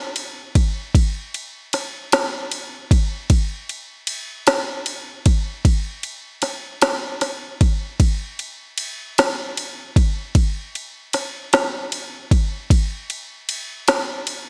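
Set in a light reverb, this dramatic, aching pop fragment in a straight 6/8 features only an organic electronic drum kit, up front and overdriven, its soft kick, woody snare and ride cymbal carrying the produced, electronic groove from 0.2 to 14.5 seconds.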